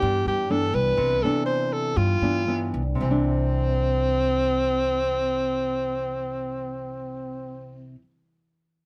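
Breezy, romantic bossa nova in C major and straight 4/4 at 111-129 BPM, tuned to A4 = 437 Hz, in which a brief excerpt eases its pace over the first 3 seconds as an up-front alto saxophone carries the melody with a breathy, clear subtone, vibrato and scooped notes, above a warm, thumb-plucked classical nylon-string guitar and a woody pizzicato upright bass on steel strings, moving from Cmaj9 to Cadd9 at 3.0 seconds under light reverb.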